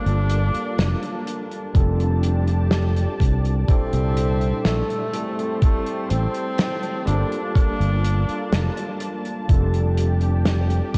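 Vaporwave in G dorian at a slow 62 BPM in a straight 4/4, this nostalgic, woozy fragment of a longer piece drifts through a dreamy mix soaked in a lush hall reverb with a cassette-tape haze. A clear tenor saxophone carries the melody with light vibrato and tape echo, sitting low between A3 and D4 until it drops out at 9.0 seconds. Beneath it, a barky, overdriven tine electric piano played through a combo amp adds gritty accompaniment with tremolo, analog chorus and analog delay, while a thick, warbling sawtooth unison pad holds detuned, slow-blooming chords with chorus. The fingered electric bass is bright, growly and punchy, sitting up front alongside a thumpy electronic kick that arrives at 1.7 seconds with vintage 12-bit sampler grit. A small-room soul drum kit with a mid-forward, medium-tuned snare, hi-hat and a rolled-off top shares that same sampler grit as the chords move through Gm9, F69, C13 and Am7 before circling back.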